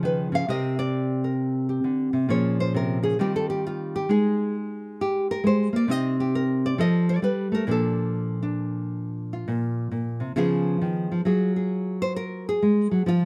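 Relaxed and sophisticated, this short solo jazz piece cut from a longer work swings at 134 BPM in 4/4, carried entirely by a fingerpicked nylon-string guitar with a classical, acoustic character that sits up front in light reverb. The guitar ranges from Bb2 to F5, moving through colorful harmony such as Csus2, Bbm9, Eb69 and Bbmaj7, with a featured solo passage running to 11.3 seconds before a brief new section arrives on Gbsus2.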